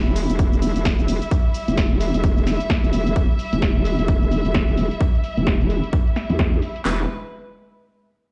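A nasal, resonant vowel-sweep wobble bass with chorus, overdrive and sidechain pumping sits up front in this bouncy, aggressive bass house excerpt at 130 BPM in E minor with swung 16ths, filter-swept alongside the drums until 6.9 s, as an overdriven kit of punchy kick, cracking snare and handclaps hits from 0.4 s over a tape-toned layer of cabasa, softened hi-hat and snare, while a smooth, bowed chamber string section holds pumping, low-passed chords, the mix heard through a big sound system in a bare stone room with a dulled top, until the Em harmony turns to E at 6.9 s.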